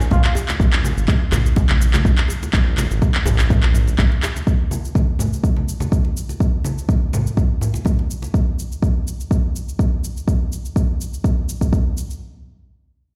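Driving and earthy, this afro house excerpt at 124 BPM in 4/4, with a light swing on the sixteenths, rides on an up-front, deep, layered electronic kick drum, a round, dark analog bass with sidechain pumping that drops out at 4.1 seconds, a tight, cracking djembe in the background until 4.3 seconds, bright, saturated congas played with hard hands that stop at 8.3 seconds, and produced electronic cabasa and handclaps, all heard through the sound of a big system in a bare small room with a large studio reverb.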